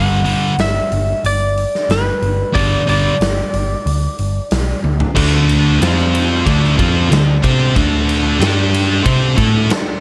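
A small-room sound frames this powerful, anthemic hard rock excerpt at 92 BPM in 4/4, where a scooped high-gain guitar and a sludgy overdriven guitar grind out the riff over a dark, round hollow-body bass and an up-front big rock kit with a punchy kick and bright cymbals, while a twangy, slightly broken-up lead guitar with analog delay carries the melody until 4.8 seconds, a drum fill leads into the next section, and from 5.2 seconds a very quiet, gritty tonewheel organ with slow rotary speaker adds sustained chords over a progression moving through G5, D, F5 and D5.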